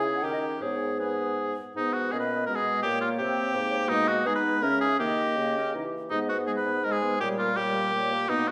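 A quick classical-period movement for wind quintet in G# minor at 165 BPM in 3/4, urgent and stormy, moving through G# minor, C# minor and D# harmony over this brief 8.5-second cut from a longer piece. The clear, punchy oboe sits up front and close on its second line, while the airy silver flute carries the melody with soft-attacked vibrato from the background, and the French horn and clarinet fill the accompaniment from a distant, roomy position. The mellow bassoon anchors the bass, and a wet recital-hall reverb with a 1.4-second decay lends the ensemble a church or concert-hall sound.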